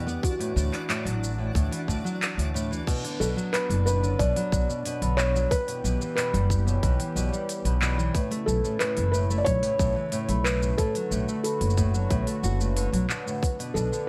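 Delicate and wistful, this folktronica excerpt moves at 91 BPM in a straight 4/4, set in B minor and tuned to A4 = 438 Hz. A felt-muted upright piano carries the melody with a dark, intimate tone, touched by delay and plate reverb, while a nylon-string guitar fingerpicks full-bodied arpeggios with its own delay and an upfront, woody pizzicato upright bass anchors the low end. Beneath them a detuned analog pad holds sustained chords with subtle chorus and a warbling, vintage character, and for the opening 2.9 seconds a twinkling granular texture adds a sparkling, octave-up shimmer in the background. At 2.9 seconds a vibraphone with soft mallets enters as a second line, mellow and ringing with slow motor vibrato, roughened by 12-bit sampler grit and colored by digital delay and plate reverb. A tape-warm electronic kit of crisp hats, shaker, handclaps and crash, paired with a tight electronic kick, both re-recorded in a large room, drives the rhythm as the harmony moves from Dadd9 through Bmadd9, G6, A and D before settling on Bm, all over a bed of vinyl crackle and light reverb.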